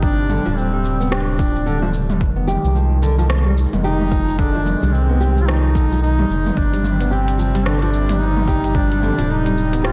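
A swung groove of overdriven electronic drums, with a deep kick plus smooth hi-hat, rim click, shaker and toms re-recorded in a large room, carries this mystical, earthy organic downtempo piece, where a round, dark analog bass sits up front beneath thumb-plucked nylon-string guitar arpeggios with finger squeak and digital delay, a detuned sawtooth pad with chorus and sidechain pumping hovers in the background over chords moving from G7sus4 to Fm7 and back, and a solo duduk sings a folk-style melody with vibrato, scooped notes and its own digital delay.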